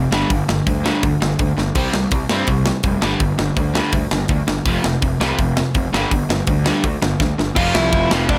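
A rowdy, rebellious punk rock excerpt at 165 BPM opens with two bright, overdriven picked guitars grinding out a riff in the background, joined by a growly, fuzz-laden electric bass sitting up front. A tight metal drum kit enters at 0.1 seconds with a tight kick, a medium-tuned snare and bright crash and hi-hat cymbals, recorded in a big room and placed forward in the mix. The riff cycles through power chords on G, C and F in a straight 4/4, with drum fills at 1.6 seconds and again leading into 7.6 seconds. At that point a dark, smooth lead guitar with overdrive breaks in with a melody in a higher register. Light reverb gives the whole a touch of space, and the recording stops abruptly as part of a longer piece.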